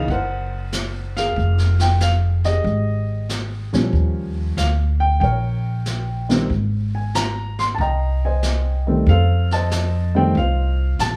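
A dry small-room recording of a relaxed, warm jazz piano trio in a swung 4/4, cut from a longer piece, where a dark, mellow baby grand carries the melody up front over woody pizzicato upright bass, while a distant, roomy brush kit with a boomy kick and medium-tuned snare joins at 0.1 seconds, all moving through Gb, Fm11, Eb7, Abmaj7 and F7.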